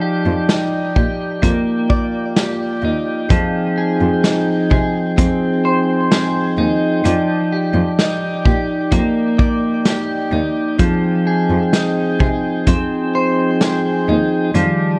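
This dream pop excerpt drifts at 64 BPM in a straight 4/4, set in F dorian with a haunting, hazy mood. A soft, flute-like tonewheel organ holds sustained chords up front through a slow rotary speaker, its key click faintly audible, while a clean electric guitar picks arpeggios colored by analog chorus and delay. A bowed cello enters at 0.3 seconds to carry the bass line, played by one player with expressive vibrato and portamento and a warm tone. A vintage acoustic drum kit joins at 0.5 seconds with hi-hat, a tight kick and a medium-tuned snare, sounding lo-fi and muffled in a small room, its top end rolled off. The harmony moves from Ebmaj7/F to Fm7 at 3.3 seconds, and light studio reverb gives the whole a soft, dreamy space.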